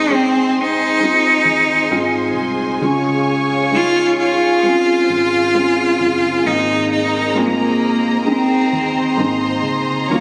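A clear, focused solo cello carries the melody up front, its bowed line singing with vibrato over a tender, heartfelt pop passage at a slow 66 BPM in straight 4/4. Beneath it, a felt-muted upright piano supplies soft, mellow accompaniment, with the thick felt and audible action noise giving it an intimate, dark character. A dark, woody violin section plays a lush second line from a distance, bowed sul tasto, while a warm string section holds smooth sustained chords with a soft attack. Low in the mix, a vintage foam-muted fingered electric bass adds a round, punchy, amped foundation. The harmony moves from Ab to Dbmaj7 at 2.8 seconds and settles on Abadd9 at 6.5 seconds. Captured on a phone in the room, the sound carries light club reverb, and the passage is cut from a longer piece.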